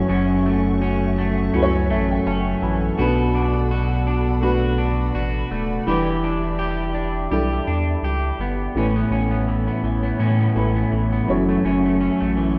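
Indie pop at a laid-back, dreamy 83 BPM with a gentle 16th-note swing in A mixolydian, this fragment of a longer piece sets a twangy, slightly broken-up electric guitar up front, its lush chorus and warbly pitch drift riding over a dark, woody upright piano with audible action noise that adds a brief fill from 1.5 to 3.0 seconds. A hollow, flute-like pad drifts airily in the background while a round, deep sub bass enters at 0.1 seconds, the chords moving from F#m7 through Bm7 and Em7 before opening onto Aadd9 at 8.8 seconds. The rough home-demo mix sits in a lush hall reverb that gives the whole piece an intimate yet spacious glow.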